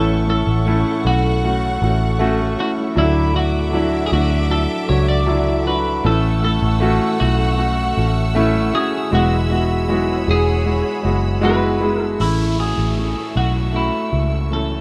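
A tender, emotional pop ballad in A major at 78 BPM opens with a clean, compressed twelve-string electric guitar carrying the melody over an up-front concert grand piano with deep bass, a dark, round, punchy foam-muted electric bass, and a lush bowed string section holding smooth chords, while a very quiet fingerpicked dreadnought acoustic guitar plays arpeggios. A rich, focused violin section adds a second line in the background until 12.2 seconds, when an electronic downlifter enters as the chords return to A. The cut, taken from a longer piece, has light small-room reverb and the rough character of a home demo mix.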